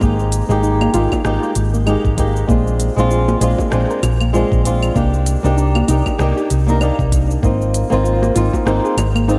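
A dark, thumb-plucked flamenco guitar sits up front in this relaxed, wistful sunset chillout excerpt, its fresh strings catching small finger squeaks as it plays accompaniment through a diffuse ambient delay. Beneath it, a hollow-body short-scale electric bass gives a round, punchy low end, while a soft synth pluck with chorus spins gentle arpeggios in the background. An electronic kick drum and a smooth R&B kit with cabasa, claves, hi-hat and rim click carry a swung groove, and very quiet, low-tuned bongos with a vintage, band-limited tone come in at 0.8 seconds. The harmony moves from Fm11/Ab through Bb7 and Cm9 to Ab69, giving a drifting, unresolved colour. A lush hall reverb soaks the whole mix in a dreamy haze.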